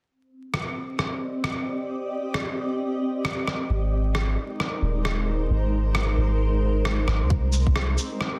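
A swung 4/4 groove at 133 BPM, with 61% swing on the sixteenths, opens this wistful, nocturnal future garage fragment in C minor. It is carried by a sampler-style electronic rim click and shaker that sound muffled and tape-warm, re-recorded in a large room, with soft clipping on the snare. A granular cloud pad holds sustained chords from Ab3 to Eb5, its blurred, evolving texture shaped by a slow attack, long release, built-in reverb, sidechain pumping and a filter sweep. At 3.7 seconds a soft 808-style bass enters, deep and round with a fast-attack, decaying sine tone, tube saturation and sidechain pumping, as the harmony moves from Cm to Abmaj7. A tight electronic kick drum appears only at 7.3 seconds, as the chords settle on Cm7 for a brief closing section. The dense, heavily limited master carries light reverb, vinyl crackle and lossy compression artefacts, with every part placed up front.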